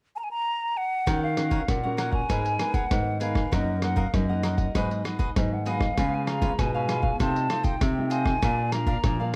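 Samba and choro in Eb minor at 98 BPM, this yearning, nostalgic fragment of a longer piece opens with an airy, hollow concert flute played close and up front with vibrato and a crisp attack, alone until the other parts enter at 1.1 s. A bright, picked cavaquinho and a fingerpicked classical nylon-string guitar, up front with audible finger squeak, carry the accompaniment through Ebm7, Abmadd9, Db7 and F7/C to a closing Bb, while a second nylon-string guitar, thumb-plucked on fresh strings, holds the bass. Up front sits a muffled, pitched-down, sampler-style drum kit of hi-hat, thumpy kick and rim click, compressed and overdriven, all within a dark, warm production with light reverb.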